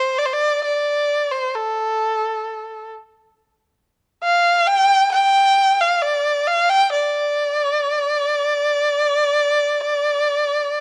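Played in a free, rubato pulse around 67 BPM in 4/4, this short passage of Chinese traditional music unfolds in the D yu mode with a wistful, graceful mood. A single erhu carries the whole 10.8 seconds alone, bowed by one player and set up front in the sound. Its tone is warm, smooth and even, with a smooth top across a range from A4 to G5. Vibrato and portamento shape its line, lending the phrases a singing, gliding quality. Close, detailed microphones capture the instrument intimately, while a light reverb gives it a gentle sense of space. Cut from a longer piece, the passage feels like a brief, reflective glimpse into a larger performance.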